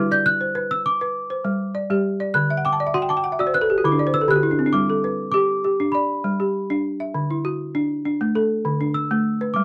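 Joyful and flowing, this short cut from a longer West African traditional piece moves at a straight 100 BPM in 4/4, in G major and tuned to A4 = 438 Hz. A worn celesta carries the melody between B5 and G6, with a bell-like, delicate, sweet tone from medium felt hammers. It sounds slightly out of tune, with a boxy small-room character. The celesta takes a solo from 0.0 to 4.7 seconds. Beneath it, the balafon plays arpeggios from D3 to A5 throughout, its hard rubber mallets giving a woody, round, mid-forward sound placed up front, and it adds a fill from 2.5 to 4.7 seconds. The harmony alternates between G and D across two sections, and the close, dry 1970s-style studio sound has a moderate booth ambience.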